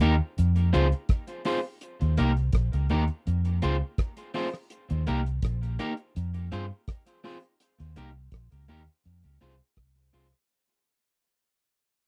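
A round, foam-muted vintage fingered bass sits up front in this hypnotic, serious roots reggae fragment, alongside a cloth-damped, thuddy drum kit with a tight kick, hi-hat and rim click, and a slightly broken-up, scooped electric guitar carrying tape echo, the music rocking between Fm and Eb in a dry, close 1970s-style studio sound as it fades out over 10.5 seconds.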